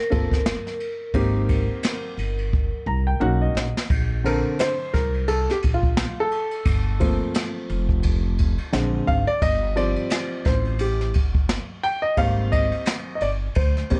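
The recording has an up-front sound, with light reverb and a rolled-off top end that keeps the whole mix soft and dusky. This cool, warm jazz-hop excerpt sways on a swung groove in 4/4, moving through lush extended chords such as Gm11, Abmaj9 and Bbmaj9. A metallic, ringing vibraphone struck with hard mallets opens with a brief melody, carrying a slow motor vibrato and a plate reverb, before it drops out at 3.2 seconds. Up front, a mellow, vintage-toned grand piano with short sustain plays accompaniment alongside a woody, growly pizzicato upright bass and a brushed drum kit with dark cymbals and a boomy kick. Piano and drums both play fills from 2.5 seconds, and at 3.9 seconds the piano launches into a solo over the bass and drums that runs to the end.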